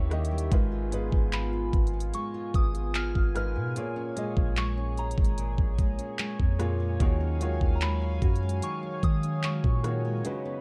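Contemporary R&B at 74 BPM in a sensual, longing mood, where a soft, pure FM synth bell melody with chorus, phaser and analog delay floats over a smooth concert grand piano, a shimmering pulse-width pad, a fingerpicked nylon-string guitar in the background, a round, deep 808-style bass and an up-front electronic drum kit with knocking kick, handclaps, hi-hat and rim click, all moving through D#7b9, G#m69, A#m7 and D#m11 in a dark production cut from a longer piece.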